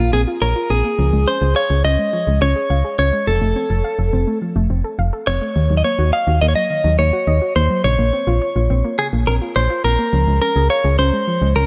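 Synth-pop at 105 BPM in Bb minor, this nocturnal, driving excerpt cycles through Bbmadd9, Db, F and Ebm under a light reverb. A clean, compressed electric guitar, recorded direct, carries the melody up front. Beneath it, a soft, round pluck plays arpeggios through chorus and tape echo, while a punchy, dark FM bass anchors the low end.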